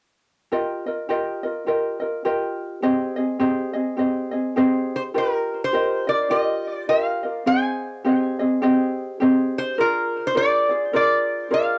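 A home cassette recording with moderate studio reverb gives this relaxed, languid Hawaiian piece a warm, slightly worn sound, cut from a longer piece in Eb major at 104 BPM with a swung 4/4 feel and tuning a touch below standard. A light, thumb-plucked ukulele sits up front from 0.5 seconds, picking through Ebadd9 and Abmaj7 chords. At 5.0 seconds a metallic, nasal lap resonator guitar, played with fingerpicks and slide and coloured by tape echo, takes the melody up front before the passage reaches Bb7 at 9.8 seconds.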